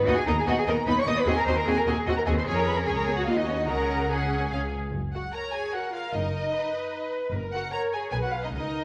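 A quick classical-period movement for string orchestra in F# major, this cheerful, graceful passage moves at 149 BPM in a straight 3/4 and is cut from a longer piece. A clear violin section carries the melody with close, smooth vibrato, while a second violin section adds a warm, even second line. The viola section fills in the accompaniment with focused bowing, the cello section supplies a rich but distant bass, and an up-front double bass section anchors the low end with a clear, focused tone. The harmony travels from B over D# through G#7 and D# minor toward a C#sus4 before settling on F# at 4.9 s, where the second section begins. The whole ensemble sits in a wet scoring-stage reverb, and the sound carries the worn, warbling pitch drift of old cassette tape.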